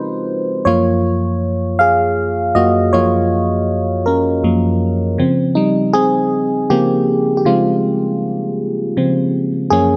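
Intimate and tender, this brief R&B cut at a slow 53 BPM in 6/8 features a solo FM electric piano, glassy and bell-like with a vintage, warbling chorus and a noise layer, sitting up front in a moderate echo-chamber reverb as it moves from Dbmaj9 to Gbmaj9 at 0.7 seconds and settles on Dbmaj7 at 5.2 seconds.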